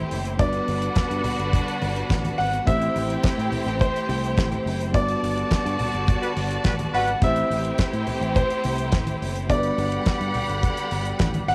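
Danceable and sultry, this disco excerpt cut from a longer piece sets a clear grand piano melody over a dry, up-front 70s drum kit with a fat snare and tight kick, a round, dark fingered bass and very quiet low-tuned congas. A worn, slightly out-of-tune tine electric piano with light overdrive adds accompaniment, while a lush, distant violin section carries a second line and a bowed string section holds smooth sustained chords in the background, all moving between Gmaj7 and Am7. A band accent arrives at 4.9 seconds, with a warm horn section adding pop-style stabs from 6.2 to 7.1 seconds, and the home cassette recording gives a small-room ambience with light reverb.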